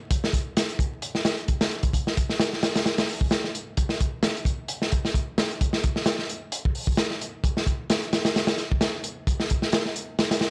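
Breakbeat with a gritty, energetic mood, this short cut from a longer piece features a crunchy, saturated acoustic drum kit of hi-hat, tight kick and medium-tuned snare, played up front in a lightly swung sixteenth-note feel with a mid-forward, rolled-off tone, set in a studio room with light reverb and a dry hardware grit dusted with vinyl crackle.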